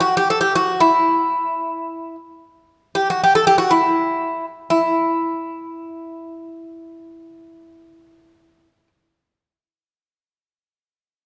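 Turkish makam ensemble music in free time, soulful and longing, carried by a solo Greek bouzouki whose picked, metallic double strings, some doubled at the octave, sit up front through the whole 8.9-second fragment of a longer piece, bathed in a wet scoring-stage reverb within a dark, warm production.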